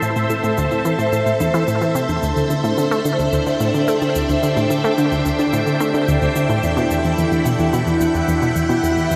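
A lush, phased string machine holds sustained chords moving from Am to D7sus4 and Emadd9 over a round, nasal analog pluck riff flecked with 12-bit grit, chorus and delay, while overdriven electronic shaker and bongos sit in the background, the whole ensemble set inside a long shimmer reverb for an expansive, hypnotic passage of sequencer-driven space music.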